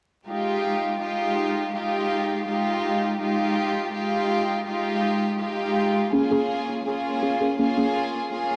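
Atmospheric yet frenetic, this drum and bass excerpt in F minor at 164 BPM opens on a dark, intimate chamber string section holding soft-attacked Fm9 chords from 0.3 s, shifting to Bbm7 at 6.1 s as a deep, detuned, wave-folded stab with chorus, cassette tape and dub echo joins the sustained strings, all bathed in a lush 2.4-second hall reverb with vinyl crackle.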